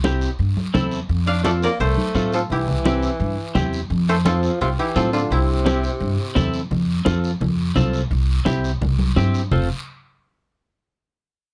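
Latin cumbia at a brisk 171 BPM in F major, this joyful, danceable fragment rides a twangy, chorus-lush clean electric guitar and a thumpy pizzicato upright bass over ringing, close congas and a raspy, distant guiro, while a fingerpicked koto carries the melody from 1.3 to 7.9 seconds beside a bright, vibrato-laden breathy tenor saxophone second line that stops at 6.5 seconds, captured in a dry, close 1970s-style studio sound with light reverb.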